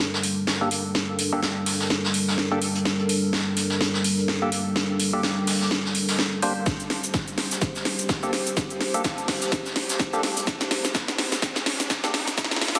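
A dense, heavily limited modern mix bathed in lush hall reverb carries this gritty, swaggering bass house build-up in G minor at 126 BPM with a swung sixteenth feel, where an up-front, detuned and wave-folded analog pad holds a moody Gmadd9 chord under sidechain pumping, a tape-warm house kit drives a fill with cracking snare, metallic hats and cabasa over a mid-forward brush kit tucked in the background, a hollow, ring-modulated organ stab with dub echo joins at 0.6 seconds, a punchy layered electronic kick arrives at 6.7 seconds, and a very quiet riser creeps in at 9.7 seconds.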